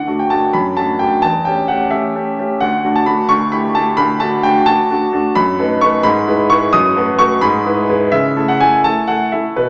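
A clear, polished baby grand piano plays alone and up front in this playful, cheerful classical-period sonatina fragment, moving in a straight 6/8 at 87 BPM and ranging from D2 to D#6. Its long sustain blooms into a wet recital-hall reverb as the D major harmony passes through A7 and then leans toward B7 and E, arriving on A over C# at 8.1 seconds before the cut at 9.7 seconds.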